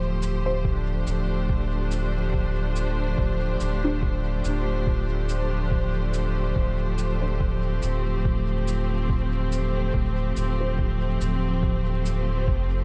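Ambient dub in D minor at 71 BPM with a gently swung 16th feel, this deep, meditative excerpt rests on a single Dm7 chord as bright, biting symphonic strings hold sustained chords up front alongside a round, soft sub bass with tube saturation, while a muffled, thumpy, tape-warm kick enters at 0.6 seconds, a pitched-down cabasa with dub echo sits in the background, and muted, detuned chord stabs with phaser, analog chorus and dub echo flicker behind, all over a digital ambience of vinyl crackle.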